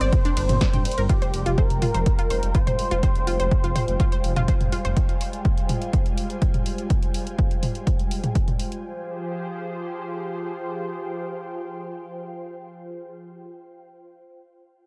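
A hypnotic, cinematic slice of melodic techno cut from a longer piece, this recording sits in a digital ambience, with a tape-warm, up-front electronic kick driving a straight 4/4 at 124 BPM in F dorian, tuned slightly low to A4 = 437 Hz. It opens on a drop over a Gm chord, where a thick, nasal unison lead with vibrato sings between G4 and C5 through dub echo. A bright, round analog pluck spins arpeggios through chorus and digital delay, and a deep, rumbling detuned saw bass beats and growls underneath, all of them pumping against the kick. The harmony settles on Fmadd9 at 1.1 seconds, and the punchy analog drum machine adds hi-hat, ride cymbal, snare and toms, its hats, toms and cymbals pumping too, while the lead, pluck and bass drop out at 4.9 seconds. A lush, phased unison pad holds sustained chords throughout, joined from 0.3 seconds by an ethereal, full-bodied airy pad shimmering with ensemble chorus and built-in reverb. 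After the drums stop at 8.8 seconds, the two pads carry the final stretch alone until 13.5 seconds.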